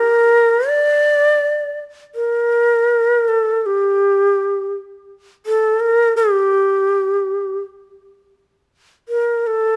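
A breathy, end-blown bamboo shakuhachi plays solo and up front in free time, its tongued notes and vibrato moving between G4 and D5 in this calm, austere fragment of Japanese traditional chamber music, with a new section arriving at 2.2 seconds, captured by close, detailed microphones with light reverb.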